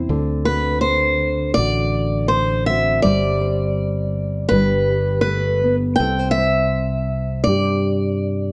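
A picked steel-string acoustic guitar carries the melody up front, entering at 0.5 s with a concert-hall clarity and the occasional finger squeak on its strings. Beneath it, a fingerpicked nylon-string guitar in a classical vein supplies a dark accompaniment from the opening moment. A fretless electric bass also sits forward in the mix, its round, punchy tone direct and present. The harmony moves from D7 through Gsus4 and G before settling on C, giving this short fragment of a longer acoustic folk piece a nostalgic, gentle mood in a straight 4/4. Light reverb lends the small ensemble a touch of space.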